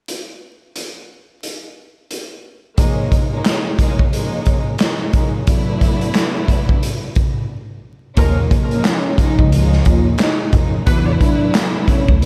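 Reflective and moody, this boom-bap hip-hop excerpt sits at 89 BPM in Eb minor with a swung feel, opening on a gritty, saturated drum kit of punchy kick, snare, hi-hat and handclaps that sits up front with a rolled-off top. Lush, distant bowed strings with vibrato and portamento arrive at 2.8 seconds over Eb9sus4 and E9sus4 chords, carrying a cassette-tape tint, and after a break at 7.5 seconds the final stretch from 8.2 seconds brings in a woody pizzicato upright bass, a mellow soft-mallet vibraphone melody with motor vibrato and digital delay, and tight horn stabs tucked in the background. Studio reverb and vinyl crackle surround the whole recording.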